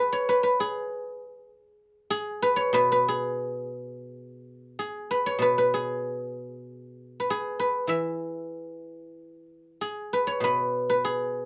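Elegant and serene, this short passage of Chinese traditional music for solo plucked strings moves freely in a rubato feel within 2/4, with the pulse drifting between 87 and 100 BPM. A lone guzheng carries the whole performance, sounding from 0.0 to 11.5 seconds across a range from B2 to E5. Its tone is bright and silvery, shaped by fingerpicks, with notes that ring on and sit up front in the mix. The instrument is tuned slightly high, to A4 = 441 Hz, and the opening material gives way to a new section at 9.2 seconds. A moderate small-room ambience surrounds the playing, lending the live performance an intimate, natural feel before this fragment of a longer piece cuts off.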